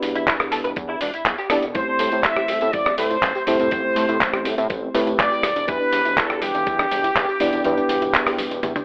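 A present trumpet section with light vibrato carries the melody from 1.8 s in this sleek, cosmic nu-disco excerpt, over a reedy electric piano with sidechain pumping and tape echo, a glossy chorused synth bass, a gritty, up-front sampler-style soul drum kit with handclaps, hi-hat, rim click, tambourine and toms, a layered knocking electronic kick that drops out at 7.7 s, a brief clean, direct-recorded guitar riff with ensemble chorus, soft warbling pluck arpeggios in the background and a very quiet tambourine, the whole mix carrying a telephone-like tone with light reverb.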